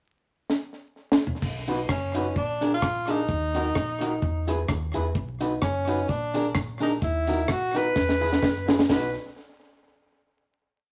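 A clear, punchy tenor saxophone with light vibrato carries a motif-based melody up front in this bouncy, cheerful ska piece in B major at 128 BPM, over a dry, dark reggae drum kit with a side-stick backbeat and fills, a round hollow-body bass walking with slides from 1.4 seconds, slightly broken-up off-beat guitar chops, and a very quiet jingly tambourine entering at 5.4 seconds, all bathed in wet studio reverb and vinyl crackle before a final B chord.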